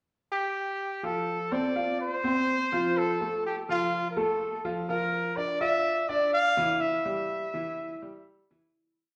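A punchy trumpet with vibrato opens this relaxed Latin piece at 0.3 s, playing song-like, motif-based phrases in a pop style at 124 BPM in F major. At 1.0 s a clear concert grand piano enters with a deep-bassed montuno in octaves as the chords move from F to Bb and then Em. The parts sit up front in a wet recital-hall reverb with softened highs, and the piece fades out from 6.8 s.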